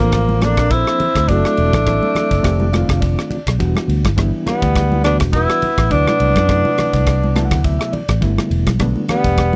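Electric jazz fusion at 104 BPM with a funky, bright mood and a light 16th-note swing, cut from a longer piece: a breathy, subtoned tenor saxophone carries the melody up front with vibrato, scooped notes and tape echo, while a second, mellow tenor saxophone with a smooth top plays a lower second line. An overdriven reed electric piano, gritty with fast tremolo through a combo amp, comps across chords like Bbmaj9, F13 and Em9 and adds fills at 2.4 and 7.1 seconds. A dark, round, punchy fingered bass anchors the groove beneath a tight acoustic drum kit of kick, ride and rim click, with thin-skinned, damped congas joining in the background at 0.3 seconds, all captured in a dry, close 1970s-style studio sound.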